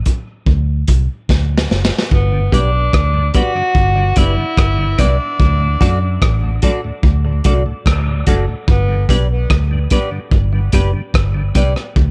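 A breathy tenor saxophone carries the melody in this hazy, spacious dub reggae excerpt, its whispered, intimate tone, soft attack and vibrato trailing off into dub echo between 2.1 and 9.1 seconds. Before it arrives, a crunchy breakbeat kit and a dark, foam-muted fingered bass open with a short break, and the drums play a fill from 1.3 seconds. The kit sounds saturated and gritty, recorded in a small room with a rolled-off top, its tight kick, rim clicks and medium-tuned snare placed up front beside the round, punchy bass. Once the saxophone enters, a piping, scooped tonewheel organ with key click and chorus vibrato sits in the background. A clean semi-hollow electric guitar joins it, colored by phaser and dub echo. The harmony moves from G to D and back to G in a straight, unhurried groove, all set in light reverb.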